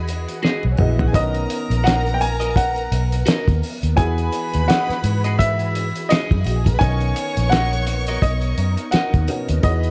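A cloth-damped, thuddy drum kit with a fat snare and tight kick sets a swung 16th-note groove at 85 BPM in 4/4, opening with a fill from 0.4 to 1.1 seconds, while a round, foam-muted fingered bass sits up front and a shimmering triangle glints in the background. In this lush, warm 1970s-style soul excerpt in B major, a mellow baby grand piano carries the melody with audible action noise over Emaj9 and Bmaj7 chords, supported by grand piano accompaniment and a dark, intimate string section bowing a soft-attack second line. A swirling, warbling string machine with chorus and phaser holds sustained chords behind everything, and from 0.4 seconds a slightly broken-up, compressed electric guitar with phaser picks out a riff, all set in light small-room reverb.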